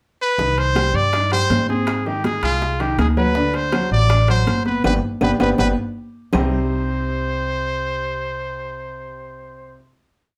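A punchy trumpet with vibrato leads this driving salsa at 161 BPM in C harmonic minor, stating song-like motifs up front over a brilliant piano montuno in octaves and a thumpy, dark upright bass playing a tumbao that anticipates the chords. Behind them, slapped and open congas, tight bongos with hand bell, ringing metal-shell timbales and very quiet woody claves keeping a two-bar time line push the passionate groove through a Cm, Ab, D7, G progression, with a band accent and drum fill before the percussion stops at 6.4 s. Trumpet, piano and bass then hold a final C minor chord from 6.3 s, heard from further back in a short studio reverb.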